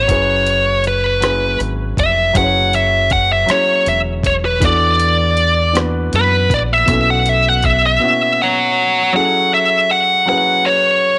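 Set in light reverb and a digital ambience, this yearning, late-night slow R&B fragment in six-eight is led by a distorted, high-gain electric guitar with slapback echo, soloing up front until 9.1 seconds over suspended ninth chords. A baby grand piano with audible action noise plays intimate accompaniment throughout, while a round, dark fingered dub bass holds the low end until 8.0 seconds. A gritty, compressed sampler-style soul kit of hi-hat, thumpy kick and rim click drops out at 7.8 seconds, leaving guitar and piano to settle onto a minor ninth chord.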